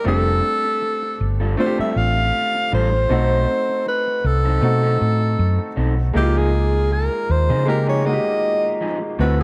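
A bittersweet, silky soul groove at 79 BPM with a light swing opens on a clear alto saxophone carrying the jazz-style solo melody up front, with soft attacks, scooped notes and a gentle vibrato, over an intimate baby grand piano whose action noise can be heard. A slightly broken-up electric guitar through a small old amp plays a fingered riff in the background, while a round, punchy hollow-body bass sits up front from 0.1 seconds. The harmony moves from F69 to B7b9 before shifting to C#69 at 6.2 seconds, all set in a dark production with light reverb and studio ambience in this short cut from a longer piece.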